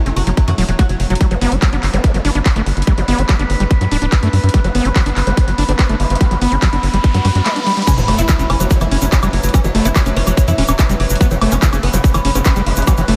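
A straight 4/4 pulse at 144 BPM drives this intense psychedelic trance passage in F# phrygian, with an up-front, tight electronic kick drum and a techno drum kit of handclaps, hi-hat, woodblock and crash anchoring a punchy, saturated sequencer bass and a squelchy, gritty overdriven acid bass riff, while a nasal vowel-sweep wobble bass sits in the background, an overtone-sweeping drone holds chorused sustained chords from 2.0 seconds, and a very quiet riser and sub drop lead into the drop at 7.9 seconds, where a woody, plectrum-plucked oud melody returns beside a grainy egg shaker inside a dreamy, reverb-soaked mix.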